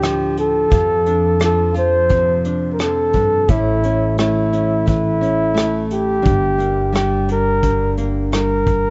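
Tender and heartfelt, this short excerpt from an acoustic folk-pop ballad moves at an unhurried 87 BPM in F major, tuned slightly low, with a breathy, mellow flugelhorn up front carrying the melody in a jazz style, its scooped notes and light vibrato trailed by tape echo. Beneath it, a full-bodied nylon-string guitar is fingerpicked in a classical manner, a woody, dark upright bass is plucked, and a vintage brush kit adds a punchy kick, hi-hat and rim click within a small, pumping room. The harmony drifts from D minor through F6 and A to G minor, and the overall sound is dry and soft-edged, its highs gently rolled off.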